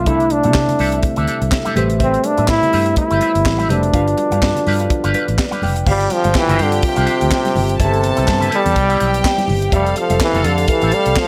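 Light reverb and studio ambience frame this driving, danceable disco excerpt, where a bright solo trombone with light vibrato carries the melody up front over a dry, tight funk kit with high-tuned snare, handclaps, hi-hat, kick and crash, a round, foam-muted vintage fingered bass, and very quiet, soft-handed congas. A clean tine electric piano through a combo amp and a twangy, picked guitar with an envelope filter's wah fill in the accompaniment, while a dark French horn section holds sustained chords in the background; the electric piano plays a fill before dropping out at 5.9 seconds. At that point a pure, floating bowed string section enters with a soft-attack second line as the lightly swung groove moves through G7sus4, Cmaj7/G and Fmaj7.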